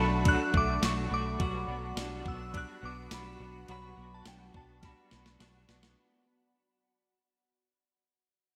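Bright 1980s-style digital production sits inside a lush hall reverb with a digital ambience, and this short dream pop fragment, cut from a longer piece, fades out across its full 6 seconds. The mood is hazy and melancholic at 105 BPM in a straight 4/4, with the harmony moving from Bm7 to Gmaj7/B. A glassy, crystalline FM synth bell carries the melody high in the register, warbling through chorus, tremolo and digital delay. Two clean, picked semi-hollow electric guitars fill the middle: one plays accompaniment through tremolo and ensemble chorus, while the other, compressed, plays arpeggios through lush chorus and delay. An ethereal, airy pad with a slow attack holds mellow sustained chords in the background, and a dark, round, foam-muted fingered bass stays up front on a single low B. A thumpy, tape-toned 12-bit drum machine enters at 0.3 seconds with kick, snare, ride and tambourine under gated reverb, closing on a fill from 4.8 seconds.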